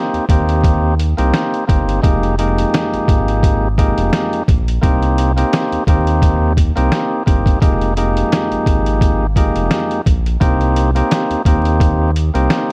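Boom-bap hip-hop with a gritty, moody feel and a lazy swing, drawn from a longer piece, where a percussive tonewheel organ sits up front with key click and light overdrive, its tone rounded off by cassette-tape grit and filtering as it moves between Cm7 and Fm11. Beneath it, a deep, round analog bass holds sustained, dark low notes, while a pitched-down, muffled sampler-style kit drives the groove with a thumpy kick, medium-tuned snare, rim clicks and hi-hat. The dry mix carries a layer of vinyl crackle throughout its 12.7 seconds.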